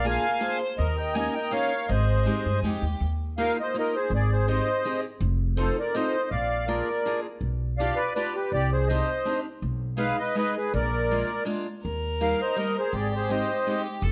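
Nostalgic and whirling, this musette waltz excerpt sets a reedy, sweet accordion up front on the melody, its light tremolo tuning giving the tune a shimmer, while a woody pizzicato upright bass anchors the three-beat sway just as prominently. A bright picked steel-string acoustic guitar fills in the accompaniment, and a distant, focused bowed violin adds a clear second line with vibrato, dropping out at 3.0 s and returning at 11.8 s. Close, detailed microphones and light reverb keep the small ensemble intimate as the harmony moves from Ab major into Eb major.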